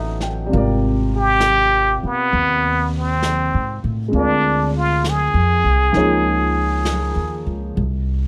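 Tender and late-night in mood, this short jazz ballad moves at a slow 66 BPM in 4/4 with a swung eighth-note feel. A trumpet with a plunger mute carries the melody up front, its bright, wah-wah tone shaped by vibrato and scooped notes in a soloistic jazz style. Beneath it, a clear upright piano supplies open, woody accompaniment, while a pizzicato upright bass with steel strings sounds thumpy and close, and a jazz brush kit enters at 0.2 seconds with dark, smooth brushed snare and hi-hat, its top end rolled off. The harmony drifts through lush chords such as Abmaj9 and Dm7b5 before settling on Dbadd9. The trumpet drops out at 7.5 seconds and the piano at 7.8 seconds, as the bass and drums carry on to the end. Close, detailed microphones and little reverb give the recording an intimate, dry presence, and the passage is cut from a longer piece.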